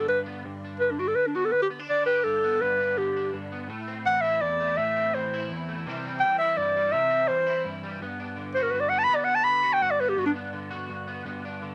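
Sunny and joyful, this highlife passage moves at 111 BPM in a straight 12/8 feel in G major, cut from a longer piece. A clarinet takes the solo melody up front, close-miked and jazz-styled, with a breathy subtone, vibrato and scooped notes. Beneath it, a bright, twangy electric guitar picks out the accompaniment at the edge of break-up, shimmering with an ensemble chorus. The harmony moves from G to Am at 3.7 seconds, then to C, and settles on Gmaj7. The clarinet falls silent at 10.3 seconds, and the guitar carries on alone until 11.7 seconds. Both parts carry the soft grain of cassette tape, set in a moderate studio reverb with the homespun character of a home recording.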